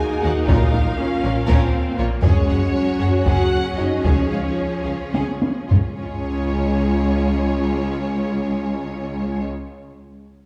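Cinematic, epic orchestral film score in 7/8 and Db major, majestic and heroic in mood, moving at 204-240 BPM counted in eighths and slowing down from 1.4 to 6.0 seconds. A warm, lush violin section carries the melody with vibrato and a soft attack, while a focused studio violin section adds a second line in the background. Violas supply smooth, even accompaniment, and a background string section and a dark, distant French horn section hold sustained chords over a harmony that moves from Bbm through Gbsus2 to Db. Cellos and double basses anchor the bass with a rich, bowed tone. A compressed, saturated taiko ensemble struck with heavy sticks drives the passage from 0.5 seconds, closing with a drum fill before it stops at 6.0 seconds, where a new section begins with strings and horns alone. The whole ensemble sits back in a reverberant scoring stage, giving a roomy, expansive sound to this excerpt cut from a longer piece.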